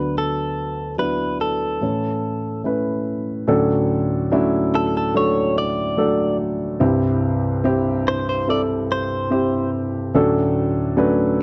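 A dark, mellow baby grand piano and a clean electric guitar begin together in this short, hopeful pop piece, cut from a longer work. The guitar carries the melody in a compact upper range, its picked, compressed tone recorded direct and treated with a subtle chorus and a slapback echo. Beneath it, the piano supplies intimate, smooth accompaniment across a broad span from deep bass to the middle register, its vintage character marked by audible action noise and set a little louder in the balance. The harmony moves through heartfelt changes, and at 3.5 seconds the music opens into a new passage built around a major-seventh colour. The guitar falls away at 9.7 seconds, leaving the piano alone until it ends at 11.4 seconds. The dry, close sound recalls a 1970s studio, keeping both instruments up front.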